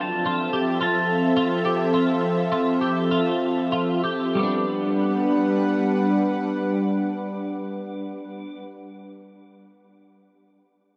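A lush, thick unison pad sits up front in this short dream pop excerpt, its detuned sawtooth chords arriving with a slow attack and a long release under chorus. The mood is floating and dreamy, in 4/4 with a straight feel around 94-110 BPM in G major, and the tempo slows during the first 4.4 seconds. A clean, compressed twelve-string electric guitar, also up front, picks arpeggios through ensemble chorus and digital delay. High above, a twangy pedal steel guitar played with fingerpicks carries the melody with slide and volume swells, sitting further back through its own digital delay. The harmony moves from Fmaj7 to Gmaj7 at 4.4 seconds, all inside a dark, warm production with light reverb and digital ambience.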